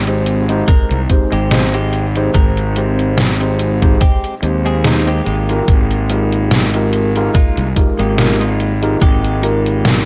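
Nostalgic and melancholic, this short vaporwave excerpt drifts at 72 BPM in F minor with a light swing, as a gritty overdriven tine electric piano with chorus and tape echo lays down Abmaj7 and Fm11/Ab chords over a growly fuzz fingered bass, an up-front detuned 8-bit drum machine with gated-reverb hi-hat and snare, a thumpy electronic kick, and a bright, twangy clean electric guitar riff entering at 0.7 seconds, all set in a digital ambience.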